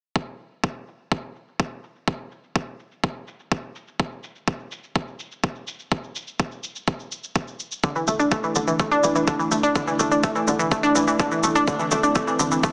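Melodic techno in a dark, melancholic mood, this excerpt opens with a punchy, tape-warm electronic kick and a layered, pumping shaker under a filter sweep on the drums; at 7.8 s a nasal, detuned analog pluck arpeggio with chorus and digital delay comes up front over a deep, wave-folded analog pad on a Dsus2/E chord, joined at 8.1 s by a tight sawtooth sequencer bass in the background, the whole mix set in huge ambient reverb and squeezed into a heavily compressed, small-speaker radio sound.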